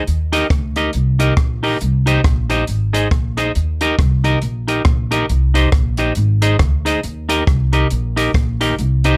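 Ska at 138 BPM in Eb major, bouncy and upbeat with a swung 4/4 feel, pairs a clean, picked electric guitar up front with a woody, pizzicato upright bass and a compact cocktail kit of hi-hat, punchy kick and rim click whose sound is dark and rolled-off, all dry and close, moving through Eb, Cm and Ab in a short cut from a longer piece.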